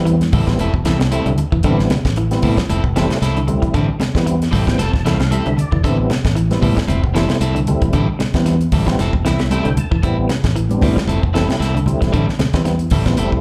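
Riding a lightly swung sixteenth-note groove in 4/4, this intense, funky afrobeat passage from a longer live set, heard through a club PA, puts an up-front, dry funk kit with a high-tuned snare and tight kick over a direct, amped fingered bass, with soft-handed congas and a clean, hollow-body guitar playing spring-reverbed arpeggios tucked in the background, a slightly broken-up guitar adding stabs with slapback echo, and a fat, key-clicking tonewheel organ through a slow rotary speaker with overdrive and chorus vibrato that breaks into fills at 4.3 and 9.0 seconds, while a drum fill lands at 5.4 seconds over a steady Am7 to Fmaj7 vamp.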